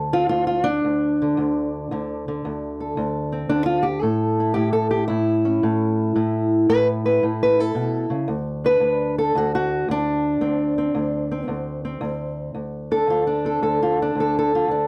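A dark, warm production sets a single guitar up front in a small room with a moderate touch of reverb, giving this short excerpt from a longer piece an intimate, close feel. It is acoustic country blues with a gritty, swaggering mood, played in 4/4 with a strong swing on the eighth notes. The only instrument is an old ladder-braced steel-string acoustic guitar, fingerpicked across a span from D2 up to B4, and its woody, boxy tone is roughened further by old strings. The harmony moves from a bare D5 to A and then to D7. At 12.6 seconds the piece shifts into a new section on a D7 chord voiced with its third dropped, carrying on until the clip ends at 14.9 seconds.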